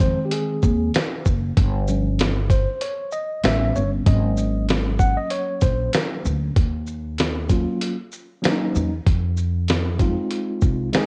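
Mellow and nocturnal, this short jazz-hop cut from a longer hip hop piece moves at 96 BPM in 4/4 with a swung sixteenth-note feel, set in Eb dorian. A mellow tine electric piano carries the accompaniment from start to finish, sounding clean and heard through its built-in speakers with a cassette tape tint, and it takes a solo across the first 6.6 seconds. Beneath it, a woody, dark upright bass played pizzicato on steel strings sits up front and thumpy, running until 10.9 seconds. The dusty soul sampler-style drum kit brings hi-hat, shaker, a fat snare and a thumpy kick, compressed and gritty with a tape-warm character, re-recorded in a large room. The harmony drifts through rich extended chords such as Fm7, Eb13/G, A9 and Ebm9, and the whole piece is wrapped in digital ambience and the muffled, homemade glow of a cassette recording.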